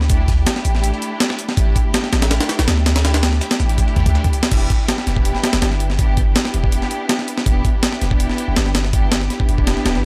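This nostalgic, atmospheric jungle and drum and bass passage opens with a breakbeat sampler-style kit, a deep 808-style bass and a lush bowed string section arriving together. The strings hold sustained chords with vibrato from a distant, focused studio ensemble, roughened by vintage 12-bit sampler grit, moving from A7sus4 to Em7 at 4.5 seconds. Underneath, the mellow sine bass holds long tones with a fast attack that decays. Up front, the compressed breakbeat kit drives a straight 4/4 with a thumpy kick, a high-tuned snare, hi-hat and crash cymbal. From 0.1 to 4.5 seconds, a very quiet, tape-warm soul kit adds hi-hat, shaker and a medium-tuned snare beneath it. The whole passage has a dry, gritty hardware sound with digital ambience, and is cut from a longer piece.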